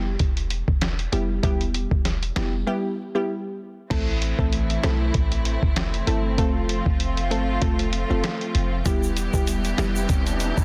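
The rhythm sits on a swung sixteenth-note dancehall groove at 97 BPM in 4/4, carried by a lo-fi sampler-style drum kit that sounds pitched down and muffled, with a thumpy kick, a medium-tuned snare, hi-hat, finger snaps and crash cymbal pushed up front and compressed. Beneath it, a clean 808-style bass in E phrygian gives deep, boomy, sine-like notes with a fast attack that decay into darkness, while a glassy wavetable pluck with a crystalline noise layer, a filter sweep and chorus rides up front in the accompaniment. After a break from 2.7 to 3.9 seconds, a studio string section enters with smooth, bowed sustained chords and light vibrato, with sidechain pumping, as the harmony moves from Em through Am and F back to Em. Near the end a tube shaker played with hard hands adds warm acoustic texture from 8.9 seconds, and an electronic riser builds quietly in the background until the cut at 10.6 seconds. 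The mood is tough and hypnotic, set in digital ambience with a dense, heavily limited modern master, and the clip is cut from a longer piece.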